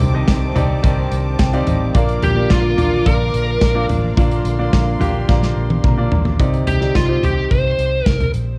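With the character of a home cassette recording and light reverb, this hopeful, uplifting piano-driven pop excerpt sets a clear baby grand's accompaniment and fills over soft-edged bowed strings, a very quiet, slightly broken-up guitar riff, a dark, round, foam-muted bass and an airy studio drum kit with a tight kick, before a bright, overdriven lead guitar enters up front at 2.2 seconds and a drum fill at 5.3 seconds leads back to the opening chord.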